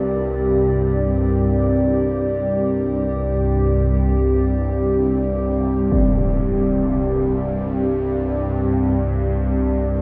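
Free-time dark ambient drone in an ominous, cavernous mood, built on a Csus2 chord: a deep, moody analog pad and a tense, string-like bowed drone under a filter sweep sit up front in a huge reverb, while a very quiet, clear baby grand piano plays low arpeggios, a bronze singing bowl rings with slow metallic beating, and a huge, bright low-passed impact lands at 5.9 seconds in this cut from a longer piece.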